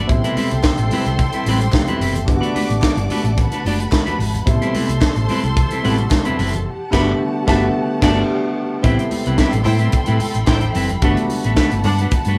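Disco at 110 BPM in A dorian, sultry and driving, cut from a longer piece, where a tight, up-front funk kit with a high-tuned snare and a round, dark hollow-body fingered bass drive a band playing live in one room, joined by clean picked electric guitar, a warm grand piano with deep bass, bowed strings holding sustained chords, a lush second vibrato string line with a smooth top in the background, ringing high-tuned congas and hollow group handclaps from 0.6 to 6.2 seconds, all moving between Am9 and Gmaj9 with a band accent from 6.7 to 8.8 seconds.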